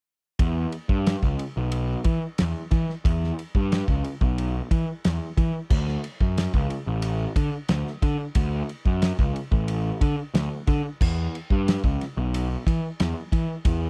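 Psychedelic rock with a mysterious, hypnotic mood, cut from a longer piece and built on a straight 4/4 pulse. A fuzz-laden picked electric bass, overdriven and sitting up front, carries the low end from 0.4 seconds alongside a damped 1970s drum kit with a fat snare, tight kick and dark crash and ride cymbals under a rolled-off top. The sound is dry and close, in the manner of a 1970s studio recording.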